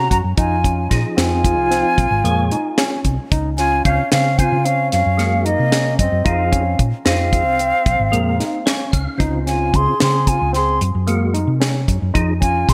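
An airy, close-miked concert flute carries the melody up front in this driving progressive band piece in 11/8 at 224 BPM (eighths), tuned to A4 = 438 Hz, while a mellow flugelhorn adds a second line with vibrato. A barky tine electric piano, lightly overdriven with digital delay, plays arpeggios over a round, punchy hollow-body bass and a dry reggae kit with a high-tuned snare and gated reverb. A percussive tonewheel organ with key click and fast rotary speaker enters at 0.9 s and plays a fill at 8.4 s as the band cycles Fm7, Bbm7, Dbmaj7 and Gbadd9 in a bright 1980s-style digital production with light reverb, in a clip cut from a longer piece.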